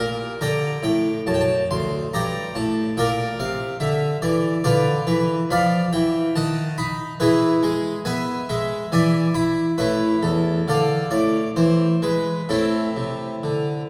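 A solo French-style harpsichord, plucked and full with two sets of strings, carries this grave, solemn baroque-style suite movement in 3/4 at 70 BPM with a free rubato feel, moving from G minor harmonies into A minor from 4.6 s and settling on an A minor chord at 12.5 s, its close, up-front tone spanning low bass to bright treble and ringing into a long concert-hall reverberation in this brief excerpt from a longer piece.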